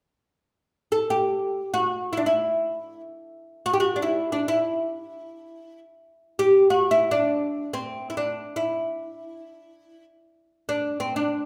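Set up front in a wet recital hall reverb with a 1.3-second tail, this short excerpt from a longer piece presents a solo acoustic oud in free time, in the Turkish makam tradition of uşşak on E. Entering at 0.9 seconds, the fretless, plectrum-plucked instrument sounds bright and woody, its double strings ringing through a soulful, melancholic passage that stays between C4 and A4.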